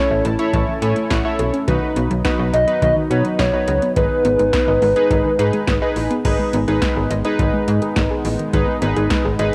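Synth-pop with a cool, melancholic mood, heard as a short cut from a longer piece with a lo-fi, cassette-tape character and light digital ambience. A hollow, woody synth lead with vibrato carries the melody until 5.9 seconds, while vintage analog keys with a warbling, detuned sawtooth tone play the accompaniment up front and open with a fill. Behind them, a shimmering pulse-width pad holds sustained chords, and a soft, mellow pluck with analog delay runs arpeggios in the background. A snappy, slap-like FM bass with a metallic attack joins at 0.1 seconds. A dry electro drum machine enters at 0.2 seconds with a deep kick, punchy snare, metallic hats and crash cymbal, as the chords move from A to B to G#m before the music shifts into a new section.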